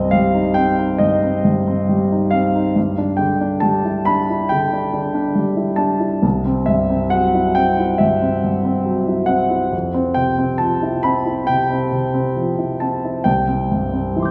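Dreamy and luminous, this impressionist classical fragment for solo grand piano unfolds in a flexible rubato across its 14.3 seconds, drifting from a minor opening chord toward brighter major harmony. The piano's tone is warm, polished and present, spanning C2 to G6. A lush concert-hall reverb with a 1.9-second decay surrounds it, and the hall is heard from further back in the room.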